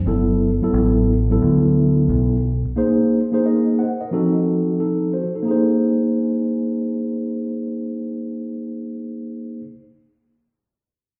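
A deep, round picked electric bass opens this cool, smoky hip hop cut at 89 BPM with a swung 16th-note feel, playing only until 2.7 seconds beneath a mellow, clean tine electric piano dressed in plate reverb. The piano carries the harmony from Gmaj9 through Bb9sus4 and F7b9, settling on Bbsus2 as a new section begins at 5.5 seconds and continuing to 9.6 seconds. The whole mix sounds muffled, as if heard through a wall, with the short ambience of a small stone room.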